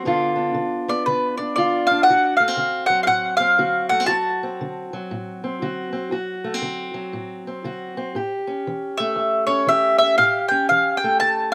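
A fingerpicked steel-string parlour guitar opens this gritty, soulful acoustic country blues excerpt with a dark, boxy accompaniment at 119 BPM in a swung 4/4, moving through G7, D7 and A7 in D mixolydian. A mandolin enters at 0.9 seconds to carry the melody high above it, its doubled strings giving a round, picked tone with a slapback echo, and it returns at 9.0 seconds after a pause. Both instruments sit up front in a dry, open-air sound with little reverb and a solo-or-duo feel.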